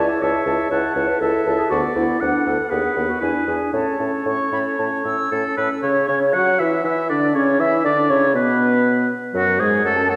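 In a rubato 4/4 at 120 BPM, this lively, graceful classical-period wind quintet movement in A major, cut from a longer piece, sets a pure, straight-toned, tongued concert flute melody over an up-front oboe second line with light vibrato and a soft attack, a dark, distant clarinet and a roomy French horn in the background as accompaniment, and a smooth-topped bassoon bass, all bathed in a wet scoring-stage reverb heard from further back in the room, as the harmony moves from A/C# through E7 to A before shifting at 5.8 seconds toward Dmaj9/C# and closing on F#sus2.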